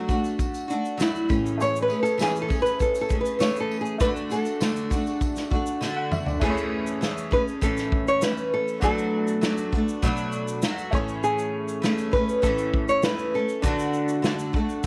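A studio reverb surrounds this short acoustic pop excerpt, with the guitars placed up front and the piano and tambourine set back in the mix. At 100 BPM in a straight 4/4 in A major, the mood is easy-going and carefree. A fingerpicked nylon-string guitar with fresh strings and a small, warm tone carries the melody, over a double-tracked, warm steel-string acoustic guitar picking the accompaniment. An unplugged drum kit played with bundle sticks sounds roomy, with a punchy kick, a medium-tuned snare, dark cymbals, toms and shaker. A bright, jingly tambourine sits in the background until 6.4 seconds, a clear, woody and slightly detuned upright piano with long sustain enters at 1.6 seconds, and a drum fill at 5.8 seconds leads into the second section. The harmony moves between Bm7, Amaj7 and D throughout.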